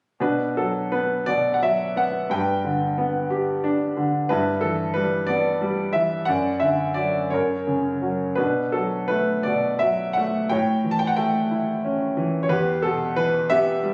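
In a rubato 6/8 at roughly 56-62 BPM in dotted quarters, this brief cut from a longer classical piece moves in a lyrical, melancholic B minor, its dark mood carried by a solo grand piano ranging from E2 to A5. The piano sounds clear, smooth and vintage, sitting up front with short sustain, while a light club reverb and compression color a phone recording made in the room. Its harmonies pass from Bm through G and Em/G to a Dadd9/F# and F#, then settle on Bm7, A and Em by 12.5 seconds.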